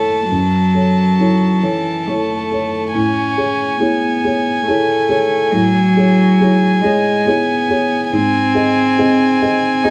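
Reflective and melancholic, this short excerpt of neoclassical piano and strings moves at 70 BPM in 3/4 with a rubato feel. A single violin carries the melody high in its range, its tone intimate and touched by light vibrato, an airy bow and a soft attack, with plate reverb around it. Beneath it a lone cello plays a second line, rich and pure with a floating, distant quality despite sitting up front. A felt-muted upright piano supplies the accompaniment, mellow and boxy. All three parts play throughout the roughly ten seconds, moving from F#m7 to Amaj7 at 3.0 seconds and arriving on G# at 8.1 seconds. The production is dark and warm, set in a studio reverb that lends the trio a soft sense of space.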